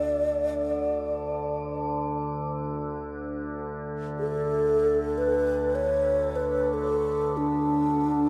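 World meditative music in free time, this spacious, calm excerpt pairs an airy, hollow alto flute carrying the melody up front with shimmer reverb and delay over a resonant, overtone-sweeping drone with chorus, all set in a wet church reverb with a dark production across its 8.3 seconds.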